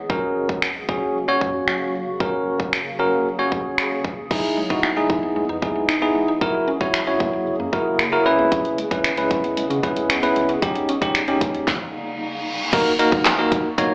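A blurred, evolving granular pad and a round, deep sub bass pulse with sidechain pumping from the start of this driving, bittersweet dance-pop passage at 114 BPM, joined almost at once by a bright, bell-like tine electric piano with slapback echo and an up-front electronic pop kit with a punchy kick, a fat snare, handclaps, finger snaps and crash cymbal. At 4.3 s a woody, percussive FM synth pluck with chorus and delay adds background arpeggios as the chords move through Emaj7, F#7, C#m7 and D#7. A brief stop begins at 11.7 s, and an electronic reverse cymbal sounds through it from 11.9 s. A faint, jingly tambourine flickers at 13.3 s before the close on D#m, all within a lush hall reverb and a club-PA, AM-radio sound.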